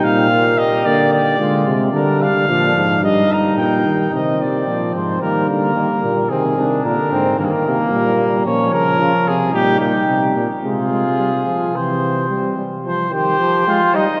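A mellow, roomy trumpet carries the melody up front in this short excerpt cut from a longer imitative canzona for brass ensemble, a driving, serious classical piece at 110 BPM in a straight 4/4. Beneath it, a mellow flugelhorn with light vibrato plays the second line, while a trombone with vibrato supplies the accompaniment. Both sound distant, and all three upper parts play throughout to about 14 seconds. A close-miked bass trombone with a light vibrato anchors the low end until 12.5 seconds. The music sits in Ab major before turning to F minor from 8.5 seconds, ending on an open F chord, and a wet cathedral reverb with a long 5.2-second decay surrounds the ensemble in a resonant, churchlike space.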